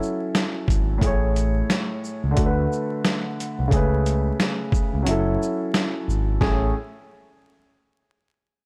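Dry, gritty hardware sound with vinyl crackle frames this confident, warm boom-bap hip-hop cut at 89 BPM in A major, where a mellow, dark grand piano filtered through cassette tape carries F#m7, Amaj7 and D6 chords, a compressed, pitched-down sampler drum kit with a thumpy kick, high-tuned snare, hi-hat and shaker swings up front until the kick drops out at 5.1 seconds, and a smooth, detuned sawtooth-and-triangle synth bass enters at 0.7 seconds with sustained portamento glides and vibrato.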